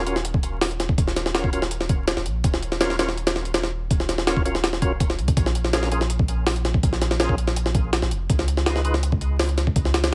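Drum and bass in a jungle vein, this atmospheric yet frenetic clip is driven by a gritty, pitched-up sampler-style kit with a thumpy kick, high-tuned snare and hi-hat, compressed and up front with studio reverb. Beneath it a deep, round sub bass holds mellow sustained notes, while a fat, lightly overdriven tonewheel organ plays percussive stabs with key click, chorus vibrato, slow rotary speaker and dub echo until 9.0 s. The harmony moves from Ebm9 to Bbm7 and Db9 under a dry sound flecked with vinyl crackle.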